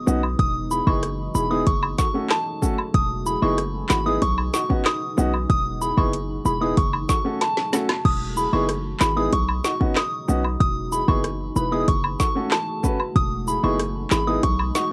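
An overdriven afro-pop drum kit sits up front in this summery, sunny dancehall excerpt at 94 BPM in E major. It comes in at 0.4 seconds with a deep electronic kick, a woody snare, metallic hi-hats, rim clicks, handclaps and crash cymbal, and a drum fill lands between 7.4 and 8.1 seconds. A punchy, heavy 808-style bass with a fast attack and a noisy edge anchors the low end, while a close, dry acoustic cabasa and woodblock add texture. A soft, pure FM synth bell carries the melody up front with chorus and tape echo, over a boxy, intimate grand piano whose action noise and long sustain can be heard. Deep in the background, a dark, moody ambient pad holds sustained chords with chorus, its own reverb and a sidechain pumping. The harmony cycles through Emaj7, F#m and Badd9, and the whole home cassette recording sounds close and dry.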